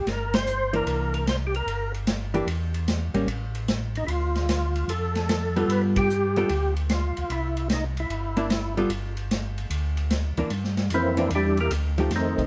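A lightly overdriven, percussive tonewheel organ opens this bluesy, greasy soul jazz trio excerpt with key click, slow rotary speaker and chorus vibrato, while a mellow, round second organ carries the bass and a vintage drum kit with dark cymbals and a punchy kick swings in a small, pumping room. A clean, compressed hollow-body jazz guitar comps up front, and the band hits together on accents at 0.3 and 5.9 seconds. From 10.5 seconds the organ takes a short solo in this live, lightly reverberant room sound.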